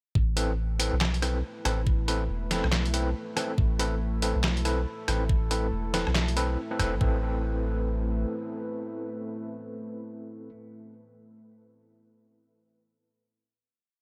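Dry and close, with little reverb, this brooding, cavernous deep dubstep piece in A minor moves at 140 BPM in a swung, half-time 4/4, opening on an Amadd9 chord. A layered, knocking electronic kick drives the drop from 0.2 seconds, joined at 0.4 seconds by a gritty, pitched-down trip hop sampler-style kit of snare, rim click, closed hi-hat and handclaps, their tape-warm, compressed sound sitting up front. Beneath them a soft, round dub sub bass holds long gliding notes in the lowest register, while an overdriven tine electric piano plays barky off-beat chord stabs through a combo amp, one shape moved in parallel, shimmering with medium tremolo and trailed by dub echo. A deep, warbling vintage pad enters at 1.5 seconds with slow-blooming sustained chords, detuned and dark, softened by chorus and its own reverb. After a band accent at 6.8 seconds the drums fall away, and from 7.0 seconds the pad and electric piano ring out a final chord to the close, the sub bass lingering beneath them until 8.3 seconds.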